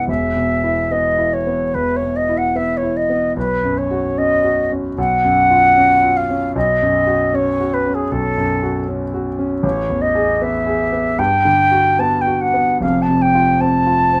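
Mysterious and wistful, this impressionist classical duo, cut from a longer piece, moves with rubato at 71-81 BPM in 4/4 as an airy, straight-toned concert flute sings the melody over a deep-bassed grand piano whose intimate accompaniment carries audible action noise, both up front in light reverb as the harmony drifts from Bsus2 through F#m6/B, Asus2 and Gmaj7 to F across 14.2 seconds.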